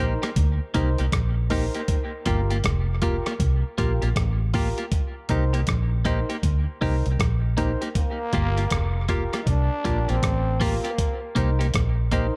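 A growling trombone steps forward at 8.0 seconds with a raspy, vibrato-laden solo line steeped in dub echo until 11.0 seconds, the one melodic voice in this meditative, spacious slice of dub reggae cut from a longer piece. Underneath, a round, foam-muted fingered electric bass sits dark and up front, while a dusty sampler-style drum kit brings a thumpy kick, hi-hat and rim click with a gritty, tape-warm character captured in a large room. The groove moves at 79 BPM in 4/4 with a swung sixteenth-note feel, centred on G minor and cycling between Cm7 and Gm7. A bright, twangy clean electric guitar and a hollow, percussive organ stab with chorus both sit low in the balance, each soaked in dub echo. The opening eight seconds form a break before the trombone arrives, and the whole mix is echo-heavy with light reverb, leaving plenty of open space around the bass and drums.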